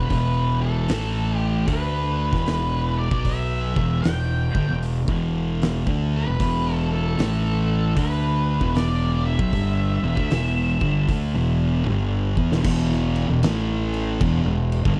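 A growly, overdriven fuzz bass sits up front in this heavy, ominous stoner and doom metal excerpt, with a swung feel as two picked fuzz guitars grind out the riff, one of them murky and set in the background. An oversized, low-tuned drum kit with a fat snare, punchy kick and dark cymbals rings in a bright stone room, while a distorted octave-fuzz lead guitar carries a gloomy melody through a slapback echo until 11.8 seconds. A drum fill from 11.9 to 12.7 seconds then sets up a closing section that returns to the same E5, A5 and Em chords, all in a dry, close 1970s-style studio sound.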